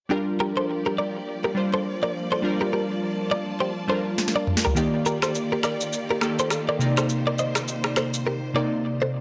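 A bright, twangy clean electric guitar riff with tape echo leads this sultry, smooth afrobeats fragment at 103 BPM in G minor, with a swung 16th-note feel, over glassy digital keys with chorus and a lush, distant bowed string section with vibrato and portamento, moving through Gm7, Ebmaj7 and Cm9. At 4.2 seconds an up-front afro-pop kit enters with a drum fill, bringing finger snaps, rim click, shaker, toms and a sharp snare, then drops out at 8.3 seconds. The dry, gritty hardware sound carries cassette-tape and transformer saturation under light reverb.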